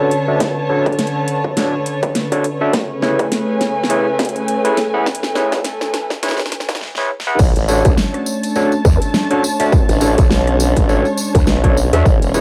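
Cassette-worn and lightly reverberant, this playful, funky glitch hop excerpt at 103 BPM in B dorian swings its 16ths as a warbling, nostalgic pad sustains Bm9 and Amaj9 chords and a dark, con sordino string section adds texture beneath barky, overdriven tine electric piano stabs, all three pumping against the kick. A distorted electronic kick and a dubstep kit with a huge snare and metallic hats drive a build-up of drum fills and a filter sweep on the electric piano. At 7.4 s the drop arrives with a sawtooth formant-sweep wobble bass, a jingly tambourine and, from 7.9 s, a nasal, resonant vowel-sweep wobble bass with tube saturation.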